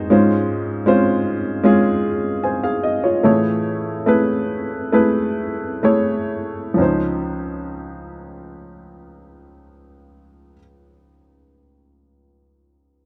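Emotional and tender, this short pop fragment cut from a longer piece unfolds in 4/4 with a straight feel, its tempo sitting between 62 and 79 BPM and slowing down across the first 6.8 seconds. A clear upright piano carries the accompaniment throughout, spanning from Db2 up to Ab5 with a woody, natural tone, short sustain and an up-front presence. The harmony opens on Dbmaj7 over Ab, moves to Amaj7 at 3.2 seconds, and settles onto Dbmaj9 as a new section begins at 6.8 seconds. Light reverb surrounds the instrument, and the overall production leans dark and warm, giving the lush major-seventh colours a gentle, reflective glow.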